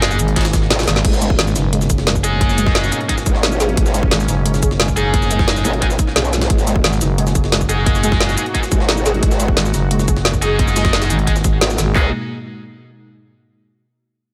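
Dark technical drum and bass with a tense, aggressive mood, this excerpt drops straight in with an up-front growling FM bass and an overdriven, wobbling growl bass built on formant filtering, driven by layered electronic drums of tight kick, handclaps, woody snare, metallic hats, cabasa and crash, with a very quiet, pitched-up jungle sampler-style kit adding gritty, tape-toned hi-hats and a high-tuned snare underneath. Bright picked stabs from a tight distorted guitar with delay cut through, while a warbling, lo-fi pluck plays dusty arpeggios and a detuned, resonant sawtooth pad sustains evolving chords in the background, both pumping against the sidechain. A drum fill arrives at 0.8 seconds and a band accent hits at 11.6 seconds, all set in a digital ambience.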